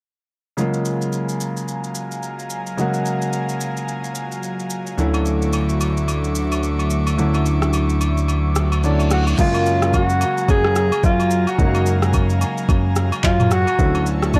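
A dark, softly reverberant production frames this relaxed amapiano excerpt at 109 BPM in F# major, its sixteenths carrying a gentle swing. A clear concert grand piano with a deep low end comps through maj9 chords alongside an airy, breathy pad whose detuned chorus shimmer pumps against the beat, while a smooth R&B drum kit with a soft kick, handclaps, rim clicks, shaker, toms and crash sits up front. At 5.0 seconds a fat, thick analog sawtooth bass arrives with a filter sweep, joined by compressed, saturated agogo bells and woodblock. A background reverse cymbal rises into 9.4 seconds, and partway through its swell, at 8.8 seconds, a mellow alto saxophone with light vibrato begins its solo line, its breathy tone trailed by tape echo and a roomy, distant air. The harmony moves between F#maj9 and Dmaj9 as the passage unwinds.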